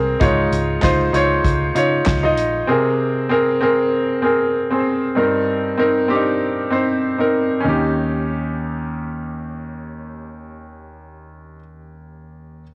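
A clear, up-front concert grand piano opens this uplifting, anthemic piano-driven pop excerpt with a lightly swung feel. A dark, round, foam-muted picked electric bass joins at once, and from 0.2 seconds a loose indie drum kit adds a fat snare, tight kick, hi-hat and handclaps with a cassette-tape grain. Bass and drums drop out by 2.6 seconds, leaving the polished, short-sustained piano to carry the Dbadd9, Abadd9/C, Cm7 and Eb7 chords on its own through 12.6 seconds, all with the intimate character of a home cassette recording touched by light studio reverb.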